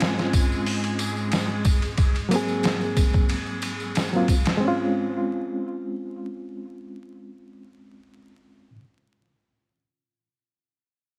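A trip hop groove at 91 BPM in 4/4, with a slight swing on the sixteenths, sets a cinematic, hypnotic mood in this short cut from a longer piece. A sampler-style drum kit sits up front, gritty and pitched down, with a thumpy kick, a medium-tuned snare, hi-hat and ride cymbal, all compressed and overdriven. Tambourine and triangle, joined by egg shaker and group handclaps, stay close but in the background. A barky, reedy electric piano carries the accompaniment through fast tremolo, light overdrive, a low-pass filter and tape echo, moving over Dbmaj7/Ab and Ab9 chords. A vintage sawtooth string machine voicing cellos lays down mellow sustained chords with a soft attack, a sub octave and ensemble chorus. The drums, percussion and strings drop out at 4.6 seconds, leaving the electric piano alone until 8.7 seconds, all bathed in light digital ambience and vinyl crackle.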